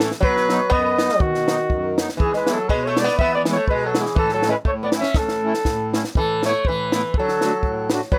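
Festive and jolly, this brief cut of alpine folk dance-band music in A major moves at 122 BPM in a lightly swung, rubato 2/4, with a warm, vibrato-rich flugelhorn singing the melody up front, a buzzing, shimmering plectrum-plucked sitar with sympathetic strings adding a round second line, a reedy accordion with slow beating filling out the accompaniment, and a dry compact cocktail kit with a punchy kick and high-tuned snare that plays a fill at 5.1 s, all captured with close, detailed microphones and light reverb.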